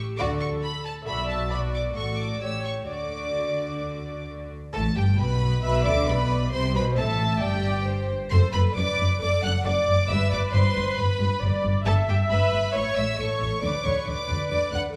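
A high violin section opens the melody at 0.0 s, its tone rich and intimate with light vibrato and a soft attack, while a dark, floating viola section supplies accompaniment beneath it. At 0.2 s a second violin section adds a pure second line, and cellos and double basses settle into the bass, the cellos carrying gentle vibrato and the basses a woody, shaded tone. This is a quick, graceful classical-period movement for string orchestra at 135 BPM in 4/4, played with a lively yet rubato feel, every section bowing sul tasto for a veiled, close sound. The passage begins in D major and moves to G major at 4.7 s, where the harmony passes through C and D over F# before reaching A and an open D5 near the end. A recital hall reverb gives the strings a wet, spacious bloom throughout this portion cut from a longer piece.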